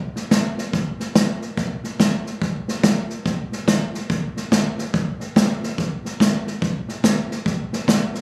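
A swung eighth-note feel at 143 BPM in 4/4 drives this brief country excerpt, taken from a longer piece and carried entirely by an unplugged acoustic drum kit. The kit enters at 0.2 seconds and plays through to the end at 8.2 seconds, using hi-hat, kick drum and snare drum. Struck with bundle sticks, it has a natural, small-room character, with a punchy kick and a medium-tuned snare, and the kit sits up front in the mix. The recording sounds as if it was captured on a phone in the room, with a wet studio reverb, a club-like ambience and noticeable compression around the kit. The mood is brooding and dusty.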